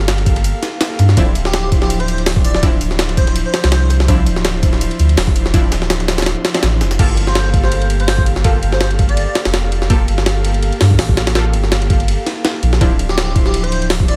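A gritty, pitched-up jungle sampler-style drum kit with a thumpy kick and high-tuned snare sits up front in this raw, nostalgic drum and bass excerpt, over a deep, round dub sub bass and an airy, breathy chorused pad on Gm9 and Dm9 chords, while a very quiet electronic snare and tambourine play until 7.0 seconds, a bold orchestra-hit-like synth stab with dub echo sits in the background, and a dreamy, detuned lead with vibrato and dub echo enters in short phrases from 1.5 seconds.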